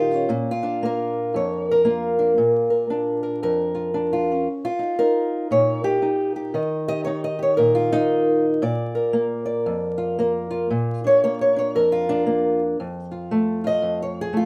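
Swung eighths roll along in an easy 4/4 through this laid-back, swaggering acoustic country blues, cut from a longer piece. A single fingerpicked, ladder-braced guitar with old strings carries everything, sitting up front with a dark, woody, boxy tone across a span from its low bass to its upper register. A moderate studio reverb gives it a little room, and a vinyl crackle runs beneath it.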